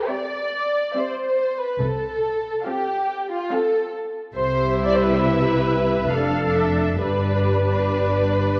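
Warm and lyrical, this slow romantic movement for muted string orchestra unfolds in a rubato triple metre, with one violin section carrying a veiled, up-front melody over a second violin section's lush inner line and a distant, lightly vibrato viola accompaniment. At 1.8 seconds, the cellos, smooth-topped and set in the background, enter together with a close double bass section to add a dark foundation beneath the gently shifting harmony. The passage, cut from a longer piece, sits in a wet scoring-stage reverb and carries the warbly pitch drift of worn old cassette tape.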